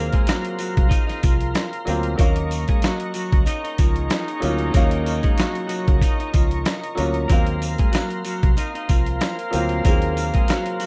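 A clean, picked electric guitar melody opens this dark, reflective boom-bap hip-hop excerpt alongside woody, slightly detuned upright piano with cassette-tape grit, smooth tonewheel organ chords with chorus vibrato, vintage jazz-style horn stabs tucked in the background, and a round, deep dub fingered bass, all moving between Ab13 and Ebm7 in Eb dorian. From 0.1 seconds a compressed, pitched-down sampler-style drum kit sits up front at 94 BPM with a lightly swung 16th feel, its thumpy kick, medium-tuned snare, rim clicks and hi-hat joined at 0.3 seconds by faint, jingly sleigh bells. Slapback echo touches the guitar and horns, and the whole thing has the dry, rough character of a home demo with little reverb.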